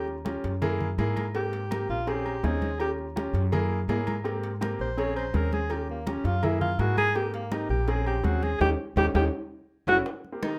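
Lively and sophisticated, this Afro-Cuban jazz passage, cut from a longer piece, moves in a straight 4/4 under a moderate club reverb. A clear alto saxophone takes the solo up front, its soft attack, vibrato and scooped notes shaping a jazz-style line over a cycling progression of dominant, major seventh and minor seventh chords. Beneath it, a pizzicato upright bass sits forward with a woody, thumpy tone, while an intimate upright piano accompanies with long sustain and audible action noise. Bright, damped congas and ringing agogo bells and timbales sit in the background, with tight, high-tuned cowbell and bongos struck by hard hands kept very quiet. Near the close, a band accent arrives at 8.6 seconds, followed by a drum fill at 9.0 seconds, and a breathy, close-miked tenor saxophone slips in on a single Eb3 at 10.4 seconds as the phrase resolves onto a rootless Abmaj9.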